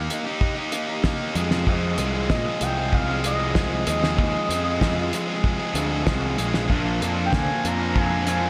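An up-front, bright fuzz guitar riff drives this moody, cool indie rock excerpt at 95 BPM in F dorian, joined by a smooth, expressive synth lead with a soft attack, vibrato, chorus, phaser and slapback echo carrying the melody, a punchy overdriven picked bass, and a dry, dark, cloth-damped drum kit with a fat snare and tight kick, while a second, background fuzz guitar with lush chorus and slapback echo enters at 6.7 s as the chords move from Eb through Fm7 to Bb7, all set in a hall reverb for a big arena sound.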